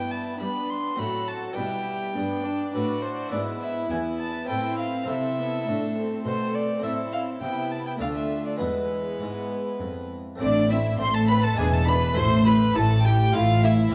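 Classical, a baroque-style concerto movement with solo episodes in 3/4, this stormy, driving excerpt sets an up-front solo violin with a reedy, gut-string voice and light vibrato against a rich, smooth-topped chamber violin section on the melody, a second violin line beneath, a dark, distant viola section and an airy, brilliant harpsichord in the background. A warm chamber cello section carries the bass, joined at 10.4 s by a bowed double bass section as the harmony moves from G through E and A minor to D minor and back. The production is dark and warm, with moderate recital hall reverb giving the period-style strings a sense of space.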